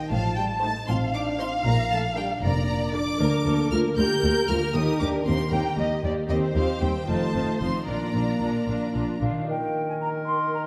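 Cinematic orchestral music in Bb major, this short passage from a longer piece moves at 77 BPM in a straight 6/8 with a playful, magical mood. From the opening, a rich violin section carries the high melody with vibrato while a second violin line with a soft attack sits beneath it, supported by a smooth-topped viola section and mellow, lightly vibrato French horn chords. A ringing concert harp spins arpeggios in the background as a cello section and a distant double bass section anchor the bass from 0.1 s. The harmony travels from F7/A through Bb, Eb and Cm/Eb to F7 before settling on Bb. At 9.2 s the strings and horns give way to an airy flute ensemble, joined by a bright solo clarinet and a roomy bassoon as the music turns to Eb, with the harp ringing on to 10.7 s. A scoring-stage reverb wraps the whole ensemble in a generous, wet space.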